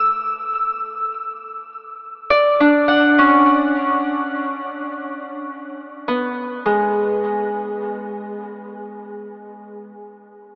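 In free time, this melancholic, reflective ambient excerpt features a solo concert harp, fingerpicked, mellow and ringing, sitting up front from 0.0 to 9.9 s with tape echo, moving from Dmaj9 to C#5 at 3.6 s inside a huge, wet reverb with a 9.1-second tail and an AM-radio tone.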